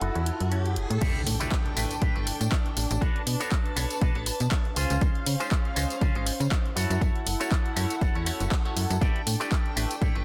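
Funky and sunny, this filtered disco house excerpt runs at 120 BPM in 4/4 with a swung sixteenth-note feel, cut from a longer piece and set in A mixolydian. A riser builds over the first second before the drop at 1.0 s, where an impact lands and a punchy, up-front electronic kick joins the analog drum machine's crash, handclaps, hi-hat and tambourine. The slap-like FM bass sits forward with a snappy, metallic attack, while a chamber string section holds soft, sul tasto chords with light vibrato, and an electric guitar through an envelope filter plays a twangy, scooped riff. A bright clav adds hollow, nasal accompaniment through a phaser, and the strings, guitar, bass and clav all pump against the kick and pass through a low-pass filter. The harmony moves from F#m7 through A7sus4, Bm7 and C#maj7, all within a dense, heavily limited master with digital ambience.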